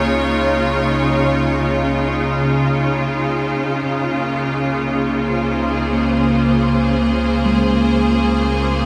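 In free time, this serene ambient excerpt rests on a single Dbmaj9 chord in Db major, tuned to A4 = 436 Hz, for its full 8.9 seconds. Up front, a bright, biting symphonic string section holds bowed chords with light vibrato, bathed in shimmer reverb. In the background, a mellow, clean tine electric piano plays arpeggios through tape echo and shimmer, while a round, dark analog bass blends square and sine waves on a deep, sustained Db with a fast filter-pluck attack. A cathedral reverb with a 4.8-second decay gives the piece a vast, wet space.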